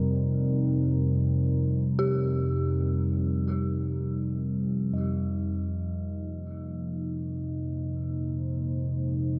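A deep, wave-folded ambient pad sits up front in this ominous dark ambient drone in free time and F minor, holding sustained chords over a nasal, rumbling low drone whose filter sweeps through the opening 5.0 seconds, while an eerie, inharmonic FM bell traces detuned arpeggios until 8.0 seconds and a pure quartz singing bowl with slow beating fades in from 5.0 seconds, the whole fragment set in a cavernous cathedral reverb.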